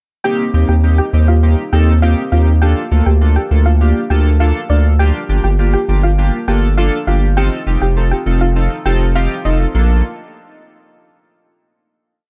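Carefree and summery, this short dance-pop piece in Bb major moves at 101 BPM in a straight 4/4 and runs as a brief pre-chorus that settles onto a closing Bbmaj7 at 9.7 seconds. A deep, round analog bass enters at 0.5 seconds and sits up front in the mix, playing an off-beat line with a fast attack and sustained notes. Above it, a glossy, retro polysynth with chorus fills in close-voiced chords in an eighth-note rhythm, its pulse-width-modulated tone carrying a sub octave and a filter sweep. A soft, gentle pluck with chorus carries the melody, a repeated hook doubled in octaves whose detuned, decaying notes have a noise layer. The chords move from Bbmaj7/D through Gm7 and F7, and the whole piece has a dark, warm production with little reverb.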